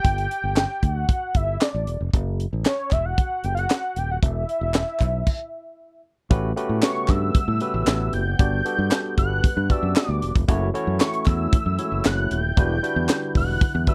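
A straight 4/4 groove at 115 BPM drives this slick, danceable early-eighties boogie funk, built on a tight, polished drum kit up front, with its high-tuned snare, tight kick, hi-hat, crash and handclaps, over a direct fingered electric bass and a very quiet, hollow group handclap. A fat, detuned sawtooth lead with chorus, vibrato and slapback echo carries the melody, and after a stop from 5.3 to 6.3 seconds, a barky, clean tine electric piano and a dark, shimmering pulse-width pad join at 6.3 seconds. The sound is dry, with little reverb.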